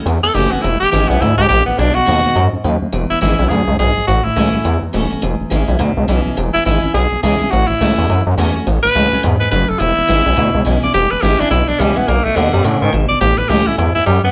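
Rockabilly with an upbeat, rollicking swing feel, cut from a longer piece and played by a band together in one room with light reverb. A raspy, bright tenor saxophone takes an up-front solo through the opening 2.9 seconds, with scooped notes and light vibrato over a gritty, saturated synth bass that sits just as far forward. A full-bodied, picked steel-string acoustic guitar plays sixth chords beneath them as the piece moves into a longer second section.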